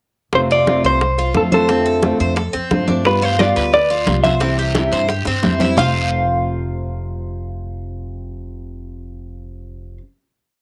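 A sunny, relaxed Cuban son in the guajira style opens at 176 BPM in F major with a dark, full-bodied nylon-string guitar strumming with muted slaps and finger squeak, a woody, growly pizzicato upright bass playing a tumbao that anticipates the chords, and ringing congas and tight, high-tuned bongos with hand bell sitting close and dry in the background. A clean, compressed hollow-body jazz guitar carries the song-like motif melody up front, while a bright, metallic Cuban tres picks an arpeggiated guajeo on double strings, both tres and nylon guitar carrying a cassette-tape colour, and a raspy guiro joins at 3.1 seconds. After a drum fill the percussion drops out at 5.9 seconds, leaving the guitars, tres and bass to hold a final F chord in a small room with moderate spring reverb, on a homely cassette recording.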